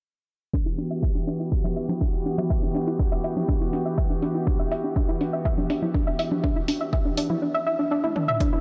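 A heavy, layered electronic kick drum sits up front at 122 BPM in this driving yet melancholic melodic techno excerpt in E minor, joined at 0.8 s by a dry analog drum machine playing low-passed congas, hi-hat and toms. Alongside them, a dark, round pluck arpeggio with cassette tape grit and tape echo and a smooth sawtooth pad holding an Em7 chord both pump under sidechain and chorus. Filter sweeps move across the drums and the arpeggio in a dreamy mix soaked in a huge ambient reverb, and a drum fill arrives at 8.0 s.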